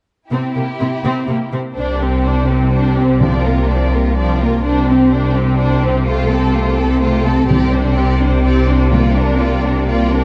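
An up-front, bowed double bass section enters at 1.8 seconds beneath the strings, anchoring this heroic, adventurous cinematic score at 126 BPM in 3/4, in C mixolydian. A distant violin melody sits in the background over a focused second violin line, a close, expressive viola accompaniment with a soft attack, and a cello bass, all played as lush ensembles with vibrato. A build-up runs from 1.8 seconds to the end of this fragment, with background timpani at 3.2 seconds and again from 7.5 seconds, over chords moving between C, Csus2, Bb/C and F/C in a dark production with a moderate scoring-stage reverb.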